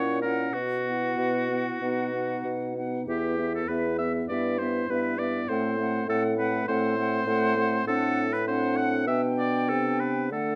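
Urgent and dramatic, this quick classical-period movement for wind quintet moves at roughly 94-102 BPM in 4/4, with a rubato give to the pulse. Over its 10.6 seconds, cut from a longer piece, all five players sound throughout: an airy concert flute carries the melody with vibrato and a soft attack, heard close and expressive. A clear oboe with light vibrato sits up front on the second line, while a dark bassoon, also prominent and touched with light vibrato, anchors the bass. A mellow French horn, miked closely, and a soft-edged clarinet placed further back fill in the accompaniment. The harmony travels through suspended and diminished colours and inverted chords, from F#7/A# through Bsus4 and Em/G to D7/A and G/B, in a detailed, intimate recording with light reverb.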